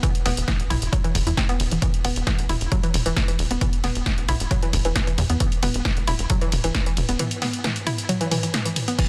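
Driving peak-time techno at 134 BPM in a straight 4/4, this dark, industrial excerpt is cut from a longer piece and stays on an E5 chord through a single drop, tuned to A4 = 439 Hz. A woody, wave-folded pluck carries the riff between E3 and E4. Its percussive, evolving tone blends triangle, sine, sawtooth and a noise layer with ring modulation, and it is treated with chorus, digital delay and sidechain pumping. A layered, punchy electronic kick, re-recorded in a small room, drives the track alongside an analog drum machine whose up-front snare is joined by crash, hi-hat, ride and toms. A tight, saturated sequencer bass enters at 0.3 seconds in the E1 to E2 range, shaped by a moving notch and sidechain pumping, and it stops at 7.2 seconds, where the kick also drops out. The mix sits in a digital ambience with a dense, heavily limited modern master.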